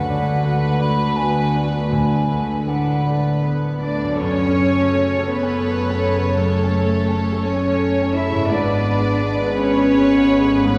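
The dark cello section stands out most, carrying a close, intimate bass line bowed sul tasto with light vibrato and soft attacks, with a double bass section sounding beneath it. This cinematic, emotional film score for orchestra feels hopeful and tender, moving in a rubato 3/4 at around 77-87 BPM and settling into F# minor from 4.2 s, with chords passing from D6 to F#m to G#dim. A violin section with a clear, pure, floating tone plays the melody, while an airy silver flute with expressive vibrato adds a mellow second line until 3.4 s, and a smooth-topped violin section joins on a second line from 3.8 s. An open-sounding grand piano with deep bass and long sustain, a viola section in the background, and a very quiet, ringing, fingerpicked harp playing arpeggios complete the texture. The ensemble is heard from further back in a concert hall with wet reverb, in an excerpt cut from a longer piece.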